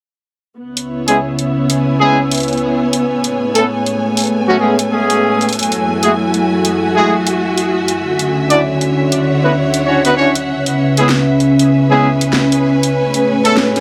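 Tight, close-miked jazz horn stabs with light vibrato, octave doubling, a low-pass filter and tape echo punch through this funky, gritty glitch hop excerpt with swung 16ths, over a deep, detuned analog pad with lush chorus and slow attack, a bowed string ensemble with expressive vibrato and portamento, and a layered electronic drum kit of cracking snare and bright hi-hats entering at 0.8 s, as the chords move through C#m7, Amaj9, F#m9 and Dmaj9.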